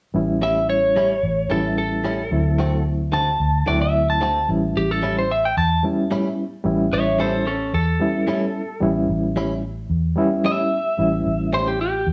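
A moderate stone-room reverb surrounds this band, heard playing live together in one room, in a short, laid-back and gritty blues cut from a longer piece, moving at 111 BPM in a straight 4/4 in A mixolydian. A reedy, barky electric piano sits up front with light overdrive and a fast tremolo, comping through its built-in speakers from 0.1 seconds, while a vintage muted fingered bass supplies a round, punchy, foam-muted low end. At 0.4 seconds a lightly driven lead guitar takes the melody, its dark, slightly broken-up picked tone compressed and placed up front. Beneath it, a direct-recorded clean guitar adds twangy, compressed stabs at a lower level. The harmony moves from A7 to D7 at 2.3 seconds and returns to A7 as a new section begins at 4.5 seconds.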